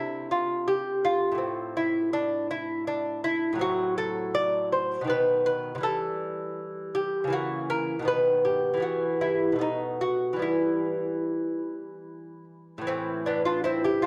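Classical baroque-style dance for solo lute in triple time, grave yet flowing in mood, taken from a longer piece. The lute plays alone from 0.0 to 14.1 seconds, fingerpicked on nylon double strings, some doubled at the octave, with a bright, delicate tone placed up front. Its phrasing is elastic and rubato, drifting from a minor-key opening toward a new minor centre from 3.6 seconds, passing through diminished and dominant-seventh colours before settling and returning to the opening harmony at 12.9 seconds. A moderate recital-hall reverb surrounds the instrument, and the production overall leans dark and warm.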